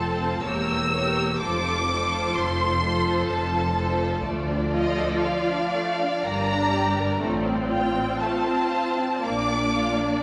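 A slow romantic classical movement for string orchestra in triple metre, this serene excerpt unfolds with a flexible, rubato feel, moving from a diminished chord through gentle major and minor harmonies to settle on Bb at 9.3 seconds. Violins sing the melody up front with lush, soft-attacked vibrato while a second violin line supports beneath, violas add rich accompaniment touched with portamento, and cellos and double basses anchor the bass, the cellos focused and the basses soft-edged. The whole ensemble sits in a wet concert-hall reverb that lends the strings a distant, enveloping glow.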